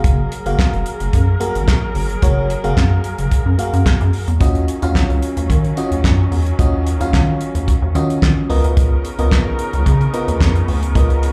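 Feel-good and danceable, this early-eighties boogie funk excerpt moves at 110 BPM in F# major, passing through F#maj9, D#m9 and C#13 as a damped 70s drum kit with a fat snare, tight kick, hi-hat and handclaps sits up front beside a rubbery, hollow square bass with a resonant filter pluck. A lush, dreamy FM electric piano with a soft pad layer adds chorus and slapback echo, while a veiled, con sordino studio string section holds dark bowed chords with vibrato underneath. The whole groove comes across as a live gig heard through the venue's PA, wrapped in club reverb.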